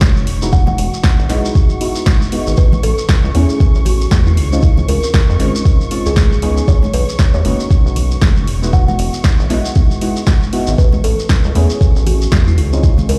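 A swung 4/4 deep house groove with a deep, up-front electronic kick, punchy snare and hi-hat, hard-handed congas in the background and a grainy shekere drives this sunny clip from a longer piece, where a rubbery, nasal square bass pumps under soft, detuned chord stabs washed in chorus, phaser and tape echo, a woody kalimba melody with dub echo enters at 0.5 s over major-ninth chords, and a veiled, muted chamber violin section hovers distantly, all played through a big sound system in a bare stone room.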